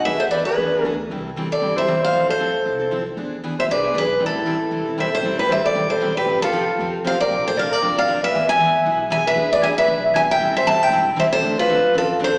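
Drenched in a wet recital-hall reverb with a small-speaker sound, this fiery, virtuosic cut from a longer jazz manouche piece swings at 232 BPM in A minor, with a bright, up-front picked steel-string acoustic guitar carrying the melody, a breathy, whispered soprano saxophone with vibrato and scooped notes adding a second line, a full-bodied jumbo acoustic guitar with finger squeak providing accompaniment, and a woody, thumpy pizzicato upright bass on gut strings sitting in the background as the chords move through E7, Fmaj7 and Am7.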